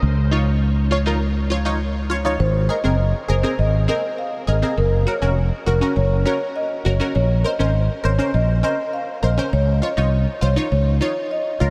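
A straight 4/4 dancehall groove sets a sunny, summery mood in this excerpt from a longer piece, with a dark, round fretless electric bass sitting up front from the start. At 0.3 seconds a punchy sawtooth chord stab joins, bright with chorus and a low-pass filter, and at 2.4 seconds a woody marimba played with medium mallets takes the melody through a diffuse ambient delay. Moving through add9 colours and a plain Gb chord, the whole track drifts in a huge, dreamy reverb.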